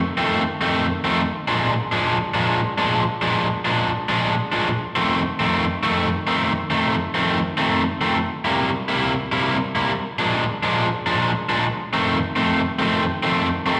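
Heard through a venue's PA in a reverberant recital hall, with a moderate plate tail hanging behind it, this gritty, laid-back blues fragment sits at 138 BPM in 4/4 with a swung eighth-note feel in F mixolydian. A single electric guitar, cranked through a stack, plays solo from 0.2 s to the close at 13.8 s, its bright, overdriven picked tone held up front and doubled by slapback echo and analog delay. It ranges from F2 to E4 over a changing dominant-seventh progression of F7, Bb7, F7, C7, Bb7 and back to F7.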